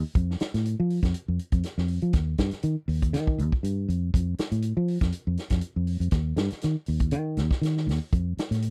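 A 4/4 groove at 120 BPM carries a gentle swing on the sixteenths, giving this short afrobeat cut from a longer piece a driving, joyful lift. The fingered electric bass opens at 0.0 seconds, alone for a moment before the vintage drum kit joins at 0.2 seconds, and both run together to the end at 8.7 seconds as one continuous section. The bass sits up front with a dark, round, foam-muted tone, direct and amped, moving between Eb2 and F3. The drum kit sounds natural and acoustic in a studio room, with a tight kick, a medium-tuned snare and hi-hat, its top end rolled off and its character warm and up front. The sound is a dry, close 1970s-style studio recording with little reverb, tuned slightly sharp at A4 = 441 Hz.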